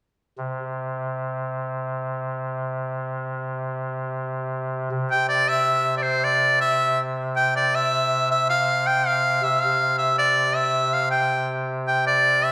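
A reverberant recital-hall sound frames this rustic, festive medieval dance in C major, a short excerpt in a straight 6/8 at 106 BPM counted in dotted quarters. A soft-reed chamber organ opens alone on a held C3 drone from 0.4 seconds, its oboe stop up front with chiff and tremulant, before an edgy shawm enters at 5.1 seconds with a folk-style melody between C5 and G5. The shawm sits forward in the mix, its scooped notes doubled by a slapback echo, and both parts play on to the cut at 12.5 seconds.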